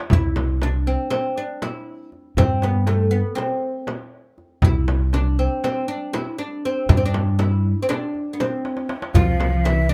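In a straight 9/8, this soulful, melancholic fragment of a Turkish makam ensemble piece sets a crisp, deep metal-shell darbuka and a small, bright frame drum under a woody, fretless oud melody, up front with its double strings, and a dark, thumpy pizzicato upright bass, all closely miked in a dry space, until a drum fill arrives at 8.7 seconds, with a breathy end-blown ney entering at 9.1 seconds and a lush, bowed symphonic cello section at 9.2 seconds.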